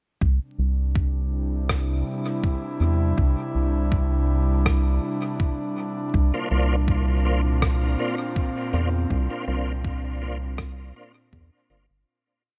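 Ambient dub, spacious and hazy, with a muffled, thumpy electronic kick up front and a sparse, echoing rim click riding a lightly swung groove under vinyl crackle and light reverb. A round, deep analog bass with tube saturation carries a mellow dub-style line, while an airy, breathy pad with chorus holds slowly shifting chords that move from C to Bbadd9/C. At 6.3 seconds a smooth tonewheel organ with fast rotary speaker, chorus vibrato and dub echo adds off-beat stabs in one parallel shape, before the piece fades out from 8.1 seconds to its close at 12.1 seconds.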